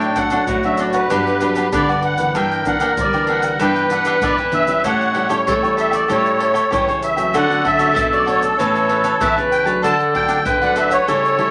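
A small, wet room holds this lively, sunny samba and choro excerpt in D major at 96 BPM, where a reedy, shimmering musette accordion carries the melody up front over a clear clarinet second line with light vibrato, crisp picked cavaquinho, one fingerpicked nylon-string guitar and another thumb-plucked on bass, and soft-handed egg shaker, pandeiro and deep surdo, moving from Dmaj7/A through Gm6 and A7 to settle on D at 9.8 seconds.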